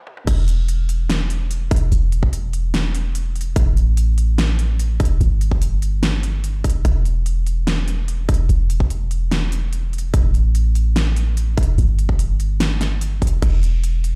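Future bass in a half-time feel, lush and dreamy, this excerpt opens on a drum fill and a brief stop before the drop lands at 0.3 seconds and carries through to the end. A big-room dance kit with a huge snare, crisp hats, crash and toms sits in studio reverb beside a punchy, tape-warm electronic kick placed up front, while a deep, boomy 808-style bass with a sine body, a noise layer, a fast attack and a decaying tail pumps with sidechain in the low register. The overall sound feels as if played on a big sound system in a bare room, with a large studio reverb and a high-pass filter shaping the mix.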